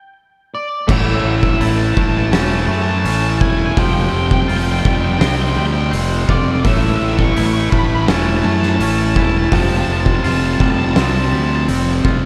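Hopeful and euphoric, this post-rock excerpt opens with a dark, fuzz-laden octave lead guitar carrying the melody alone through a brief stop before the whole band enters at 0.9 seconds, with a fat-snared, punchy oversized low-tuned drum kit in a bright stone room, an up-front overdriven fingered bass, a tight distorted guitar riff, twangy clean arpeggios echoing through digital delay in the background, and a very quiet pedal steel guitar adding sustained chords with volume swells and slide, all alternating between A and Fadd9 in a dark, warm production.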